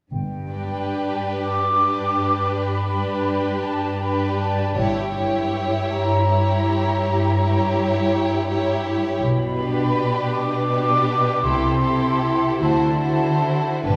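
Classical slow romantic movement cut from a longer piece, warm and serene at 52 BPM in a rubato 12/8 in G major, where a mellow, airy flute section and up-front cellos with woody double basses open at 0.1 seconds before a smooth chamber violin melody, lush second violins and intense violas join at 0.5 seconds, the strings all bowed with vibrato and everything heard from further back in a wet scoring-stage reverb as the harmony moves through Gdim7 toward a closing D9.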